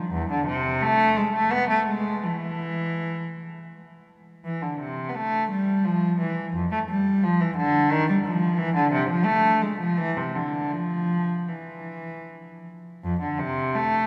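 This classical, baroque-style suite movement for unaccompanied cello is solemn and grave, moving in 3/4 at roughly 76-90 BPM with a freely breathing rubato. A single bowed cello carries the entire 14.1-second passage alone, sounding up front in the mix, with a nasal, reedy gut-string tone in period style. Its line stays in the instrument's lower register, between E2 and B3. A long, wet cathedral reverb with a 4.4 s decay surrounds the cello and gives it a distant, resonant presence. At 13.0 seconds the music turns to a new section just before the clip, cut from a longer piece, breaks off.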